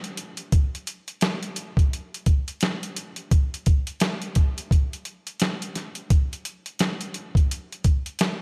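Hip hop in a soulful, warm mood, this short clip is cut from a longer piece and runs in 4/4 with a swung sixteenth-note feel. A boom bap sampler-style drum kit carries the whole recording from 0.0 to 8.4 seconds, built from hi-hat, kick drum and snare drum. The kit sounds compressed and pitched down, with a gritty, tape-warm character, a thumpy kick and a medium-tuned snare. It sits up front in the mix. A light reverb and digital ambience surround the sound, and from 0.5 seconds the drums settle into a single section.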